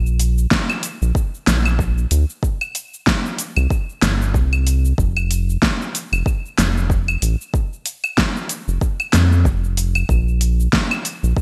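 Sunset chillout with a relaxed, sunny mood, this short excerpt cut from a longer piece rides a gently swung groove in 4/4. A round analog bass anchors the low end from the very start, its deep, dark tone blending detuned sawtooth, sine and triangle waves into a fast-attacking, sustained sound that sits up front. A deep house drum kit joins at 0.1 seconds with cabasa, claves, metallic hats and a fat snare, its layered, produced sound treated with studio and gated reverb. An electronic kick drum arrives at 0.5 seconds, deep and tape-warm, placed up front with a touch of studio reverb. The whole recording carries a bright 1980s-style digital production with light reverb; the bass holds until 11.3 seconds, while the drum kit and kick play through to the end at 11.4 seconds.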